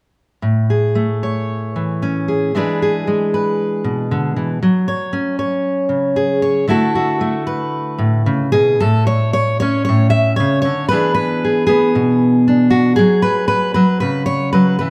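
This is a folk piece for solo fingerpicked steel-string acoustic guitar, with a warm, pastoral mood and a loose rubato feel over a 4/4 metre. The guitar plays from 0.4 to 14.9 seconds, ranging from A2 up to E5, and sits up front with a full, auditorium-sized body. Its opening phrase moves through Amaj7, E7, F#sus2 and Dadd9, giving the harmony an open, warm colour. At 8.8 seconds a second passage begins, settling onto a plain A chord before returning to E7 and F#sus2. A light reverb surrounds the instrument, and the recording is cut from a longer piece.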